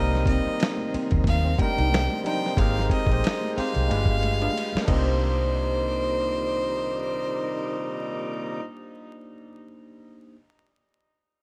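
A bowed fiddle leads this smooth, introspective neo-soul excerpt in C minor, its clear, close tone carrying the melody up front with light vibrato over a bed of vinyl crackle at 91 BPM with a gentle sixteenth-note swing. Beneath it, a barky, lightly overdriven tine electric piano plays the accompaniment, a tonewheel organ holds sustained chords in the background through chorus vibrato and a slow rotary speaker, and a twangy, slightly broken-up electric guitar adds a fingered second line until about 5.3 seconds. A dark, foam-muted fingered bass sits round and punchy at the front, while a gritty, compressed sampler-style drum kit with a thumpy kick and medium-tuned snare joins alongside distant, high-tuned congas played with soft hands. The harmony moves from Cm9 through Abmaj9 and G7b9 before returning to Cm9, with a band accent from 2.6 seconds and a drum fill leading into a new section at 5.2 seconds. 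A pop-style saxophone section enters with stabs at 4.4 seconds, touched by tape echo, as the drums and congas fall away and the electric piano carries on last.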